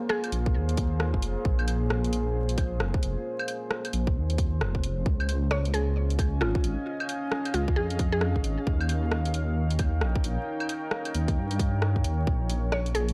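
Future garage at 133 BPM in Bb dorian, melancholic and ghostly, with a swung 16th-note feel over a slow Bbm7, Dbadd9, Eb7 progression in this short cut from a longer piece. A deep, warbling ambient pad with vintage 12-bit sampler grit and sidechain pumping holds sustained chords throughout, while a rumbling, detuned saw bass sits up front with its own pumping and a tight electronic kick drives from 0.5 to 12.4 seconds alongside a garage kit of claves, rim clicks and bright hats in a small room. A woody, round mallet-like pluck drifts in with short tape-echoed melodic phrases, most fully from 5.5 to 8.4 seconds, and the whole mix carries a dry, gritty hardware character dusted with vinyl crackle.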